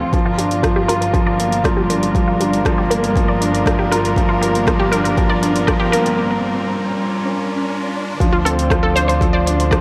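A felt-muted upright piano with audible action noise opens this intimate, hypnotic piano-and-strings electronica piece at 119 BPM, playing a soft riff with delay over dark, con sordino chamber strings holding sustained Gm7 chords and a smooth bowed double bass section, while an overdriven deep kick and a house kit of hi-hat and rim click enter alongside a warbling, detuned sawtooth pluck arpeggio in the background with cassette tape colour, delay and a filter sweep, sidechain pumping moves the strings, bass and pluck, and a very quiet riser from 1.8 s carries the build through a break at 6.2 s into a drop on Dm7 at 8.2 s, set in a lush hall reverb.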